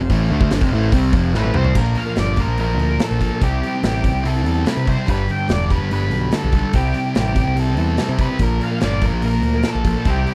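A straight, driving 4/4 pulse carries this confident, swaggering classic rock clip, cut from a longer piece. A big acoustic rock kit with a punchy kick, medium-tuned snare, bright cymbals, hi-hat and toms plays under an up-front sludgy distorted guitar riff and a growling, overdriven picked bass. At the open, a crunchy overdriven guitar plays a riff alongside while a very quiet, shouting tonewheel organ holds sustained chords through a rotary speaker with audible key click. At 1.4 seconds, during a drum fill, an octave-fuzz lead guitar with a dark, distorted tone enters to carry the melody, and the fill leads into the main section. From 1.8 seconds a shimmering, octave-doubled twelve-string acoustic guitar picks a warm accompaniment in the background. The sound is dry and close, in the manner of a 1970s studio recording.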